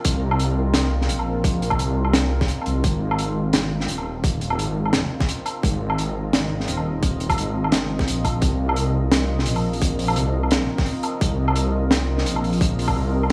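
Lightly reverberant studio ambience frames this spacious, dark excerpt of half-time drum and bass with a gentle swing, where a tight, layered electronic kick and a gritty, saturated breakbeat kit of hi-hat, high-tuned snare and woodblock sit up front. Underneath, a rumbling, detuned sawtooth bass holds sustained low notes. A moody, mellow ambient pad with slow attack, chorus and its own reverb pumps against the beat while moving from Cm to Abadd9 at 2.8 seconds and back to Cm at 8.4 seconds, with the kick dropping out at 12.9 seconds.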